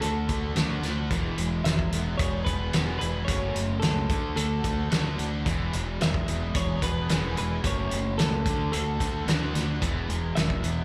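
Indie rock with an upbeat, carefree mood, this short cut from a longer piece moves at 110 BPM in a straight 4/4 in E major, heard as a live gig through the venue's PA with club reverb and small room ambience. A twangy, compressed clean electric guitar carries the melody between A4 and E5, treated with harmonic tremolo and slapback echo. Beneath it, a crunchy overdriven guitar sits in the background playing a riff through analog chorus, while a thick fuzz guitar adds its own distorted riff. A growling fingered electric bass, direct and amped with overdrive, anchors the low end down to E1. The loose indie drum kit sits up front with a fat snare, punchy kick and hi-hat, its sound saturated and gritty with a rolled-off top, as the chords cycle through D, E and F#m across the 10.8 seconds.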